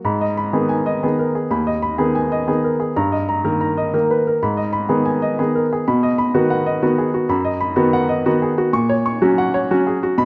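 Nostalgic and wistful, this short classical piano waltz is cut from a longer piece and moves in 3/4 at about 124 BPM, though its beats are uneven and the phrasing leans into rubato. A solo upright piano carries everything from 0.0 to 10.2 seconds, its tone clear, woody and polished, with a short sustain that keeps each note distinct. The playing spans from D#2 up to C#6, set up front and present in a moderate recital hall reverb that adds a modest sense of space. Rooted in G# minor and tuned to A4 = 439 Hz, the harmony passes through G#m, D#/G, a return to G#m, then B and F#/A#, giving the fragment a gently unsettled, longing character.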